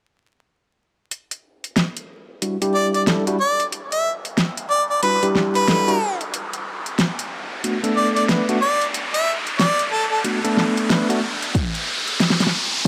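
A bright, close-miked harmonica carries the melody of this gritty, funky glitch hop excerpt, playing a jazz-style solo between A4 and E5 with light vibrato, scooped notes and an analog delay, from 2.7 to 10.2 seconds. The groove moves at 92 BPM in 4/4 with a 61% swing on the sixteenths, in E minor, built over Em7 and then Bm7 before the harmony drops out at 11.6 seconds. A pop drum kit of hi-hat and snare enters at 1.1 seconds, tape-warm with a fat snare and metallic hats. A clean tine electric piano adds stabs through built-in speakers, pumping against the sidechain and echoing through analog delay. The whole passage is a build-up, with a filter sweep running throughout and an electronic riser climbing from 2.0 seconds, until a punchy, layered electronic kick lands up front at 11.5 seconds. The dry hardware recording carries transformer saturation, vinyl crackle and a light reverb, giving it a gritty character.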